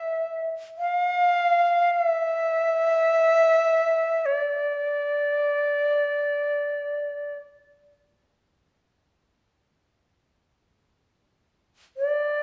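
In free time, a solo shakuhachi plays meditative, austere Japanese chamber music in D hirajoshi, its bright, reedy, airy bamboo tone carried up front with soft attacks and a straight sound within a narrow span from D5 to F5, wrapped in the wet reverb of a recital hall in this 12.4-second cut from a longer piece, with lossy compression artefacts.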